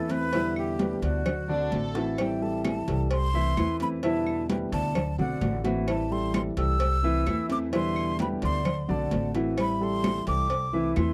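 Latin Cuban son with a guajira flavor and a danceable, warm mood, this short cut features a breathy, expressive flute melody with vibrato over thumb-plucked nylon-string guitar, mellow arpeggios on a dark grand piano and a woody, thumpy pizzicato upright bass up front, while tight cowbell and bongos play along as bright high-tuned congas and compressed woody claves sit in the background, a soft-attacked sul tasto violin section adds a brief second line from 1.5 to 2.2 seconds, and the dry, close 1970s-style studio sound carries light reverb.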